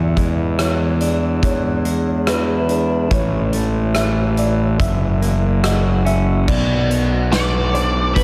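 Melancholic and brooding, this short post-rock passage moves at a slow 71 BPM in a straight 4/4, cut from a longer piece and bathed in a huge, dreamy reverb with a long tail. A clean electric guitar, compressed and picked, spins arpeggios through spring reverb and diffuse ambient delay, while a felt-muted upright piano adds soft, intimate arpeggios higher up, its action noise audible beneath the hush. Underneath, a fuzz-soaked fingered bass sits up front with a punchy, overdriven growl, and a big rock drum kit enters at 0.2 seconds with a punchy kick, medium-tuned snare, rim clicks, hi-hat and bright crashes ringing in a large room. The harmony moves from E7 through A and F#7 before settling on B minor at 6.5 seconds, where the passage turns toward a new section. At 7.3 seconds a dark octave-fuzz lead guitar cuts in up front with a distorted, high melody trailing ambient delay.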